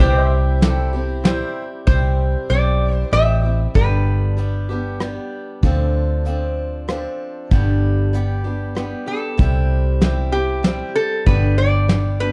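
A metallic, nasal lap resonator guitar carries the melody with slide and plate reverb, dropping out at 5.3 seconds and returning at 9.1 seconds, in this down-home, nostalgic honky-tonk and classic country excerpt in 3/4 at 96 BPM in C major, over a boxy picked swing-style acoustic guitar, a round, foam-muted vintage electric bass up front, and a soft brush drum kit with a punchy kick, while a twangy pedal steel and a brilliant concert grand piano sit in the background only in the opening seconds, all within a dark production with light reverb.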